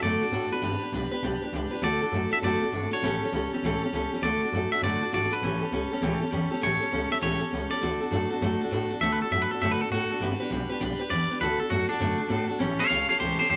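All three parts sound together from the first beat of this rowdy, retro rockabilly excerpt: a twangy electric guitar carrying the melody, a picked steel-string acoustic guitar playing accompaniment, and an upright bass plucked underneath. The groove swings in four, cycling through D, G and A7 in a classic roots progression. The electric guitar is clean, bright and placed up front, while the dreadnought acoustic sits equally forward with a full-bodied ring and audible finger squeak on the strings. The gut-strung bass gives a woody, thumpy pulse from lower in the mix. At 9.0 seconds the electric guitar breaks into a solo that runs to the end of the clip at 13.6 seconds, all of it set in a moderate studio reverb.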